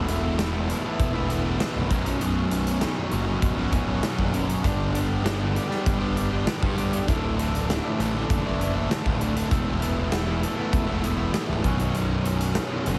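This quiet-loud alternative rock excerpt has a brooding, dark mood, moving at 99 BPM in a straight 4/4 in B minor. A double-tracked fuzz guitar sits up front with a bright, distorted, compressed riff spanning B1 to G4. Beneath it, a picked electric bass with overdrive and fuzz adds a growly low end reaching down to B0. A big rock drum kit enters at 0.1 seconds, its punchy kick, medium-tuned snare and hi-hat carrying the natural sound of a big room. The harmony cycles through Esus4, Bsus2, G and Dadd9 chords, all under light reverb and a heavily compressed, radio-style finish.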